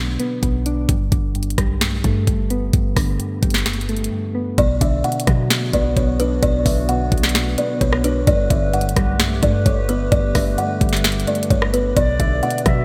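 A half-time trap groove of knocking kick, sharp snare, rim clicks and bright hi-hats sits up front in this hard-hitting, eerie hip hop excerpt, over a deep, boomy 808-style bass and round, vintage electric-piano-like synth keys treated with chorus and a low-pass filter, moving between Bm and Gadd9. A buzzing, woody kalimba melody with delay arrives at 4.6 seconds, a detuned, lo-fi tape-like pad settles into the background at 5.1 seconds, and a pure, tongued concert flute line with vibrato and delay appears at 12.0 seconds. The bright 1980s-style digital production is bathed in a lush hall reverb.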